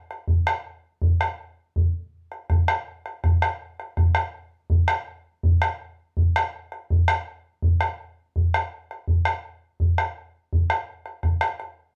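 A wet studio reverb and the feel of a band playing live in one room surround this earthy, festive Andean folk excerpt at 82 BPM in a straight 3/4, where a round, acoustic bombo sits up front with a compressed, saturated sound from 0.1 to 11.7 seconds across a single repeated section.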